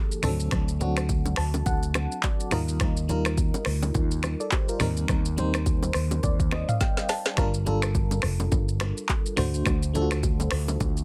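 Sultry and hypnotic, this short afrobeats cut rides a lightly swung sixteenth-note groove in four. An afro-pop drum kit sits up front with a produced, electronic character: a deep kick, woody snare and smooth hats are joined by finger snaps, handclaps, rim clicks, shaker and toms, all carrying a gritty vintage sampler edge, with a brief drum fill near 6.8 seconds. A fretless electric bass, dark, round and punchy, also sits forward, while bright, close congas and bongos add a dry patter in the background. An FM electric piano with tremolo supplies mellow, warbling chords coloured by a phaser and plate reverb, stepping out with fills around 1.1 and 5.7 seconds over a progression that moves from D7 through Ebadd9, Cm7/Eb and Gm7 back to D7. The mix is dense and heavily limited, with a close, mostly dry sound beyond the piano's reverb.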